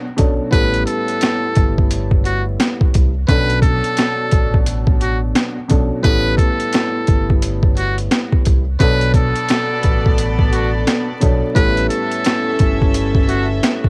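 A swung boom-bap groove at 87 BPM anchors this reflective, moody hip-hop excerpt, its gritty, overdriven sampler drums up front with a thumpy kick and high-tuned snare while a round, punchy dub bass sits low beneath a dark, woody upright piano that sounds worn and slightly detuned, with audible action noise, as the harmony moves between Bm7 and A7. A buzzy, breathy muted trumpet carries the jazz-style melody with light vibrato and scooped notes, and at 8.8 seconds a distant, reedy string section adds bowed stabs with tape echo. The piano, trumpet and strings carry a cassette-tape character, and the dry, home-recorded sound is dusted with vinyl crackle.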